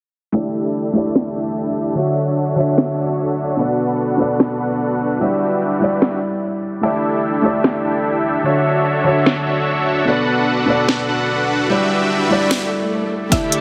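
A half-time groove with swung sixteenths carries this emotional, bittersweet future bass fragment, where a warm grand piano and a huge, detuned supersaw riff pump under sidechain compression and dub echo while a filter sweep moves over the supersaw across the section. A trap kit with a sharp snare and crisp hats joins at 1.2 s, and an electronic swell rises at 12.7 s into a drum fill at 13.3 s. There a punchy, overdriven electronic kick, a woody, chorused mallet-like synth pluck melody and a rich, smooth string section arrive briefly, all inside a lush hall reverb and a dense, heavily limited master.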